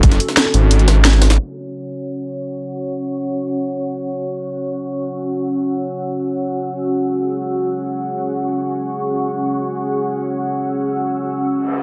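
Set in a moderate, lush hall reverb, this aggressive, mechanical dark technical drum and bass fragment in free time opens on a drop where a thick, detuned saw bass with tube saturation and a cracking, up-front electronic kit join a gritty, pitched-up jungle sampler kit in the background, all of which stop by 1.5 seconds, leaving a deep, moody analog pad with 12-bit sampler grit and sidechain pumping to carry a filter sweep, joined at 2.7 seconds by a bright, ethereal airy pad with phaser and ensemble chorus before a reverse cymbal enters at 11.6 seconds.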